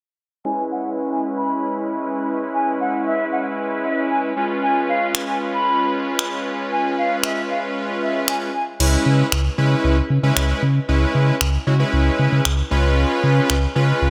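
A bold, detuned sawtooth polysynth drives this bittersweet, driving dance-pop excerpt with fat, chorused chords up front, while an airy, distant silver concert flute floats a straight-toned melody through diffuse delay and a filter sweep until 8.6 seconds, a produced electronic R&B kit of crash cymbal and finger snaps arrives at 5.1 seconds, and a deep, full sine sub bass with octave enters at 8.8 seconds, the whole mix soaked in dreamy, lush hall reverb.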